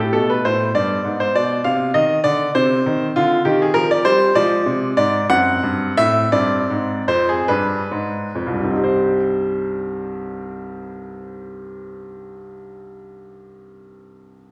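This classical, baroque-style suite movement for solo baby grand piano, cut from a longer piece, unfolds in a solemn, grave C minor at a free, rubato 6/8 pulse of roughly 42-68 BPM in dotted quarters. The piano sounds clear, open and up front across a range from C2 to F#5, set in a wet recital-hall reverb heard from further back in the room. Harmonies pass through diminished and half-diminished colours as the tempo slows from 3.4 to 8.8 seconds, where a G7 resolves to C minor to open a new section that runs to the end.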